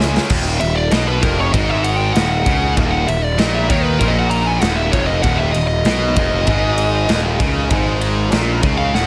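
A high-gain lead guitar, distorted and fed through digital delay, enters at 0.6 s and carries a solo over this aggressive, relentless slice of heavy metal, following a brief opening drum fill. Beneath it, three bright, distorted rhythm guitars, one of them double-tracked, churn out riffs in the background, while an up-front, punchy fuzz bass and a big acoustic rock kit with a medium-tuned snare and bright cymbals drive the music. A very quiet glass harmonica holds ethereal, glassy sustained chords throughout, all set in a small room ambience.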